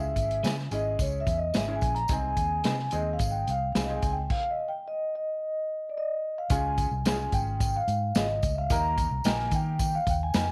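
Lightly reverberant studio sound frames this warm, uplifting uptempo 1960s-style soul excerpt at 109 BPM, where a mellow, ringing vibraphone with soft mallets and slow motor vibrato carries the melody up front over a round, foam-muted fingered electric bass, a dark, punchy big-band drum kit with a rolled-off top, a woody upright piano with audible action noise, slightly broken-up electric guitar stabs and a jingly tambourine sitting in the background, with a stop from 4.3 to 6.5 seconds before the harmony moves from Db minor to Db and Eb.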